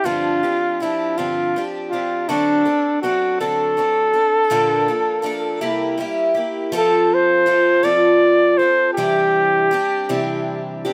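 A light reverb gives this short rock passage, cut from a longer piece, a gentle sense of space while both instruments sit up front. At 54 beats per minute, counted in dotted quarters of a straight 6/8, it moves at an unhurried, open-road pace in C mixolydian, with a hopeful mood. A picked twelve-string acoustic guitar carries the accompaniment from the start, its fresh strings sounding bright and shimmering with octave doubling, yet boxy in a parlour way, with an audible finger squeak. Over it, a warm flugelhorn takes the solo melody, played in a pop style with vibrato and a smooth top. The harmony moves through G7sus4, D7, Bbmaj7 and C7, then a second section opens at 6.7 seconds on F before settling on Cadd9 at 9.0 seconds. Both parts play through to the end at about 10.9 seconds.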